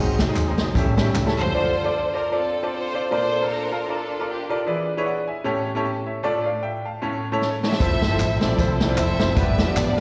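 A clear, slightly worn grand piano sits up front with a slapback echo, carrying the accompaniment through the whole of this fervent, solemn uptempo gospel excerpt in D minor at 153 BPM, swung in 4/4. A rich, focused string section with bowed vibrato and a smooth top takes the melody from 1.4 seconds, colored by slapback and tape echo, and returns near the close. A fat, lightly overdriven tonewheel organ with key click, third harmonic percussion, chorus vibrato and a slow rotary speaker holds sustained chords in the background, joined by a dark, round hollow-body electric bass and a punchy big-band drum kit. These drop out after the opening, which the drums close with a fill. They return late, the drums first at 7.4 seconds with another fill, then the organ and bass at 7.8. Close, dry group handclaps, tambourine and egg shaker add a slapback-echoed lift in the same passages. The harmony moves from dominant chords into Dm7, Bbmaj7 and E7 before settling on Fmaj7 and G7, all heard as a live gig through a venue's PA with recital hall reverb and a faint mains hum.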